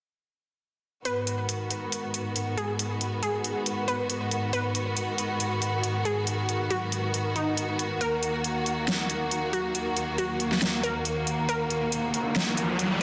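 A huge, overdriven snare and hi-hat from an up-front, layered electronic drum kit drive this aggressive, menacing half-time heavy wobble dubstep excerpt, where a lush, bowed string section with vibrato holds sustained chords beneath a bright, punchy detuned sawtooth pluck melody with tape echo, and an electronic riser joins at 11.8 s, all set in a moderate digital room and a dense, heavily limited master.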